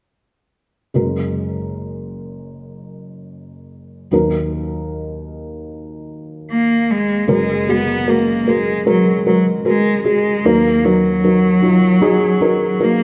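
Tender and emotional, this pop ballad excerpt in F# major moves at 76 BPM in 4/4, with a felt-muted upright piano carrying the accompaniment from 0.9 seconds: dark, intimate and short in sustain, with its action noise audible up close. At 6.5 seconds a single bowed cello takes the melody, its focused, clear tone shaded with vibrato, over piano chords alternating between F#add9 and D#m. The recording is tuned slightly low to A4 = 439 Hz and set in a wet recital hall reverb.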